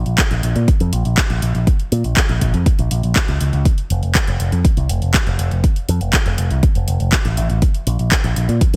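Playful and danceable, this italo disco excerpt rides a punchy, up-front electronic kick beneath a bright, direct picked electric bass with an envelope filter that spans F1 to Bb2, while a house drum kit adds handclaps and warm hi-hats soaked in gated reverb, all set in a digital ambience.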